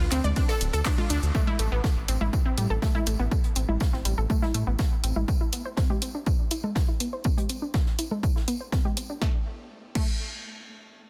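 Hypnotic and dramatic, this melodic techno excerpt opens on a drop with a bright, detuned unison pluck spinning arpeggios through a filter sweep from 1.3 s, a round, deep analog bass that stops at 5.2 s, a tape-warm punchy analog drum machine with congas, claps, shaker and cymbals, an up-front electronic kick entering at 0.4 s, and an airy acoustic jazz kit of hi-hat, snare and tambourine, with the pluck, bass and jazz kit pumping under a dense, heavily limited modern master.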